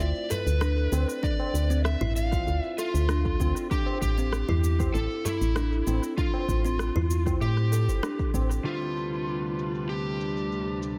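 Electronic cabasa and rim click tick through this straight 4/4 organic downtempo excerpt, joined by distant, low-tuned tabla and, from 1.2 s, a deep electronic kick, while a woody, round FM bass pumps up front beneath a close-miked, thumbnail-plucked kalimba and a dark, overdriven slide guitar melody soaked in dub echo, until at 8.6 s a clean, chorused semi-hollow electric guitar and a floating chamber string section under a filter sweep enter to deepen the meditative, echo-heavy mood.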